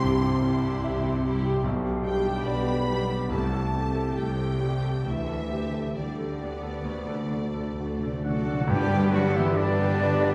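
Romantic classical music in a lyrical, lush rubato, this piano-and-orchestra excerpt sets a clear, intimate grand piano melody, with its action noise audible, up front over two bowed violin sections (one distant, one close), background violas, mellow French horns, and a bass of tuba, cellos and double basses. Barely audible dark cymbal swell and tam-tam enter at 5.1 seconds and very quiet hard-mallet timpani play a fill from 6.9 seconds. Oboe and soft-attack trumpet stabs follow at 8.2 seconds and a pure, hollow flute at 8.3 seconds, before clarinet and trombones join a band accent at 8.7 seconds, all heard from further back in a recital hall's reverb with lossy compression artefacts.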